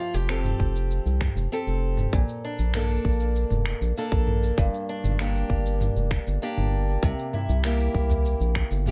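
Up front, a woody, boxy old ladder-braced acoustic guitar picks arpeggios through delay and plate reverb over a round, deep, wave-folded analog bass, while a tight, tape-warm electronic kick and an organic electronic kit of finger snaps, shaker and toms, re-recorded in a large room, drive this playful folktronica excerpt at 98 BPM in F major through Fadd9, Bbmaj7, Gm and C7.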